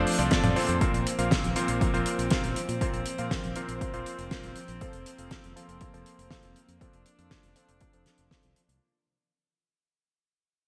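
Danceable and playful, this short italo disco excerpt in F major moves at 120 BPM in a straight 4/4, fading out across its 8.8 seconds as a filter sweeps over the bright, clangy electric grand piano stabs, which sit up front with a low-pass filter and digital delay. Beneath them a round fingered electric bass and a punchy, tape-tinged electronic kick drive the groove alongside a dry, damped 70s drum kit with a fat snare, hi-hat and toms under gated reverb, while a rich chamber string section floats softly in the background on sustained chords moving from F to Bbsus2 and back. The bright 1980s-style digital production wraps the mix in a moderate, lush hall reverb.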